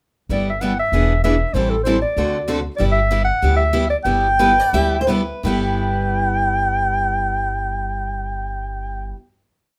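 A charming, playful acoustic string swing piece in G major opens at 0.3 seconds with a dark, close-miked clarinet playing a jazz-style solo melody with vibrato and scooped notes. Beneath it, a boxy parlour guitar plays four-to-the-bar rhythm with short accents on two and four, a second fresh-stringed rhythm guitar sits in the background, and a woody, thumpy upright bass plucks a two-beat root-and-fifth line on gut strings. The swung tempo of roughly 163-193 BPM slows from 2.8 seconds, a bright concert guitar with audible finger squeak enters at 4.4 seconds to answer in the clarinet's rests, and from 5.4 seconds the group rings out a final chord in a moderate studio reverb.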